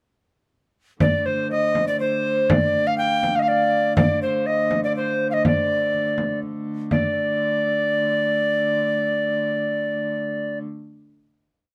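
Ancient and driving, this short medieval dance in 3/4 at 122 BPM sits in D phrygian, with a bright, reedy tenor recorder up front carrying a tongued modal melody full of ornaments and airy chiff. A fingerpicked concert harp rings in the background with the same line and its own ornaments, over a dark, smooth, wheel-bowed hurdy-gurdy drone, while a frame drum played with soft hands keeps an evenly spread pattern until 7.1 seconds. A wet booth ambience places the music further back in the room, and the piece settles onto a final chord at 6.9 seconds, with the harp ringing on alone to 11.0 seconds.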